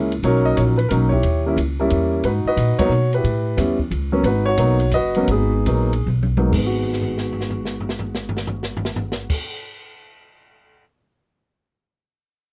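Cool and late-night in mood, this fragment of a jazz piano trio swings gently in three. The grand piano carries the melody up front, with a warm, intimate tone, long sustain and the soft clatter of its action audible, moving over chords that turn from Bmaj7 and D#7b9 to G#m7 and A9. Beneath it, a pizzicato upright bass on steel strings sounds woody, growly and thumpy. Further back, an acoustic drum kit in a small room brings dark cymbals, a medium-tuned snare and a punchy kick, with fills threaded through the second half. The trio hits a shared accent at 2.7 seconds, and from 4.2 seconds it slows down until 6.5 seconds, when a new section begins. The dry, close recording has a 1970s studio character with light reverb, and the drums carry on alone after the piano stops at 9.4 seconds.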